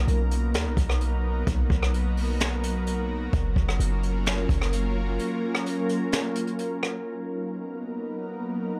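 A half-time 4/4 groove at 129 BPM comes from a jazz brush kit of hi-hat, boomy kick, rim click and high-tuned snare, mid-forward and rolled-off on top, playing until 6.9 s with its kick dropping out at 5.2 s in this floating, blissful slice of atmospheric cloud-rap hip hop. A deep, sine-based 808-style bass with a noise layer and a fast, decaying attack sits up front until 5.2 s, while an ethereal, airy pad of detuned sawtooth and triangle unison voices holds slow-attack chords through ensemble chorus, built-in reverb and sidechain pumping, moving from Bmaj7 to F#maj7 and back. A small room reverb gives the mellow blend a gentle, close space.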